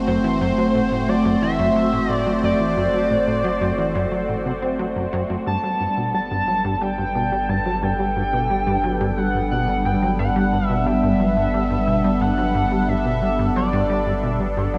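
A swirling, detuned analog pad sits up front, holding sustained chords through phaser and chorus as it moves from F#dim to Gadd9 at 5.5 seconds. This ambient, sequencer-driven space music moves at 89 BPM in a straight 4/4, and its mood is mysterious and expansive. A shimmering pulse-width lead carries the melody in a high register, its retro, warbling tone colored by vibrato, portamento, chorus and tape echo. Beneath it, a plucky analog bass plays a punchy, funky riff with a fast-decaying filter pluck, bathed in lush chorus and tape echo. A deep, round sine sub bass fades in across the whole 14.8-second span, anchoring the low end. The dreamy mix is soaked in a plate reverb with a long tail, and the clip is cut from a longer piece.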